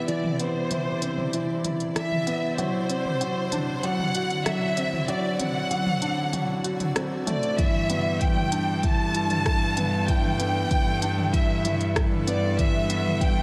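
A felt-muted upright piano sits up front with a soft, intimate riff, joined by a lush violin section singing the melody with expressive vibrato, both bathed in shimmer reverb over a cloudy, evolving granular pad that sits in the background with sidechain pumping and a filter sweep through the build-up. Smooth hats, rim clicks and toms from an organic electronic kit carry this luminous, hopeful piano and strings electronica throughout, and at the drop at 7.6 seconds a deep electronic kick and an earthy, bright cello section with tube saturation enter on the bass. The passage moves from Cmaj7 to D7 before settling on G6, all set in a concert hall reverb.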